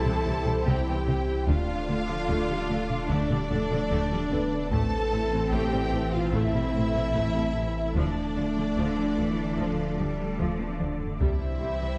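A lush violin section carries the vibrato-rich melody over a smooth second violin line in this vast, brooding hybrid orchestral and electronic film score at 74 BPM in D dorian, with expressive portamento violas, focused cellos and woody double basses bowing underneath, a silky analog string pad with ensemble chorus, dark French horns and very quiet trombones holding sustained chords, a deep, round sub bass, a soft felt-muted upright piano, glassy, detuned wavetable pluck arpeggios and a heavy-stick taiko ensemble that plays a fill from 10.4 to 11.2 seconds, all set in a moderate scoring-stage reverb as the harmony moves from C through Dm and Am.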